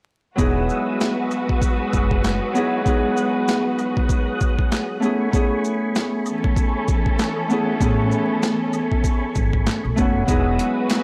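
Confident and nostalgic, this boom-bap hip-hop passage, cut from a longer piece, rides a swung sixteenth-note feel over a move from Emaj9 to Amaj9 and back again. Up front, an overdriven, compressed sampler-style kit hits with a thumpy kick, a medium-tuned snare and handclaps, re-recorded in a small room, with the hi-hat held back until 10.3 seconds. Beside it, a fingerpicked Celtic harp rings through a cassette-tape haze and filtering, while a quieter tonewheel organ holds clean, clear chords through chorus vibrato and a slow rotary speaker. A lush symphonic string section adds bowed stabs with vibrato, portamento and analog delay, and a pizzicato upright bass on gut strings brings a woody, tube-saturated low end that drops out at 2.4 seconds and returns at 7.8. Low in the mix, close and dry maracas and woodblock fill in the groove, and the whole piece carries a gritty hardware character with vinyl crackle and studio reverb.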